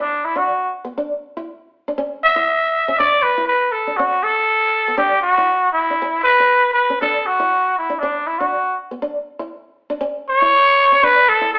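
Lightly swung sixteenths over a steady 4/4 pulse give this short, carefree highlife excerpt its joyful lilt, as harmony cycles among D, Dsus2, C#m and related colors. A growling, raspy trumpet carries the jazz-style solo melody up front, mellow yet gritty, with vibrato and scooped notes, while a small, fingerpicked nylon-string guitar enters at 0.4 s with quieter acoustic accompaniment. The band plays live in one room, bathed in wet studio reverb and heard through a telephone sound, with the trumpet both distant and roomy.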